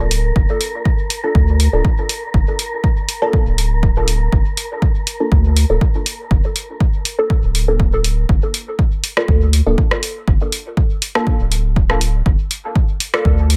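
A round, deep analog bass sits up front in this hazy, hypnotic dub techno passage, cut from a longer piece, moving at 121 BPM in G minor with a light swing on the sixteenths and sidechain pumping shaping its sustained tone. Over it, a muted, detuned sawtooth chord stab voices a rootless Gm9, its filter plucks decaying through a phaser and dub echo while a filter sweep moves across it for the first 8.3 seconds. A punchy, tape-warm analog drum machine of hi-hat and rim click enters at 0.1 seconds, and an electronic kick joins at 0.4 seconds, both re-recorded in a small room and placed up front. An airy, breathy, wind-like noise layer on Bb4 hangs low in the mix with its own reverb and pumping, dropping out at 8.3 seconds as the opening section repeats. The overall sound is dry and close, with little room reverb around the parts.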